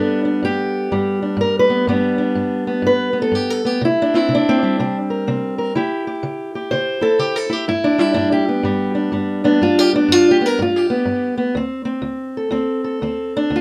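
A dark, boxy parlour-style steel-string acoustic guitar, fingerpicked and placed up front in a moderate studio ambience, carries this laid-back, swaggering excerpt of solo acoustic country blues at 124 BPM in a swung 4/4, moving through G, C7 and C#dim in G mixolydian before returning to G and reaching D7.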